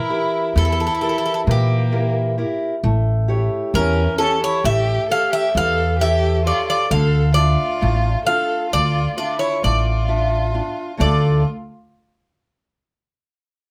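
A bright, metallic Greek bouzouki leads this dark, wistful Greek folk piece, its picked double strings, some doubled at the octave, sitting up front with the melody. Beneath it, a single bowed violin plays a rich second line with vibrato, sounding focused yet distant in the mix. A fingerpicked steel-string parlour guitar supplies a boxy, shadowy accompaniment, and a woody, thumpy upright bass on gut strings enters at 0.6 seconds, plucked pizzicato and placed prominently. The band moves in a straight 9/8 feel through Edim, A7 and Dmadd9 before settling on Dm at 11.0 seconds. A moderate small-room reverb gives the ensemble an intimate space, and the passage is cut from a longer piece.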